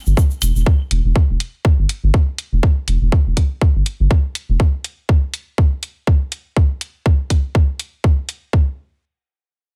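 A dry, close mix carries this hypnotic, cool minimal techno cut in E minor at 122 BPM with a swung 16th feel, where a tight, up-front electronic kick with studio reverb runs to 8.7 s, bright layered hi-hats sit above it, a deep, thick, saturated sine sub bass with sidechain pumping holds the low end until 4.6 s, a grainy acoustic egg shaker sounds briefly at the start, and tape-warm claves with dub echo tick briefly in the background.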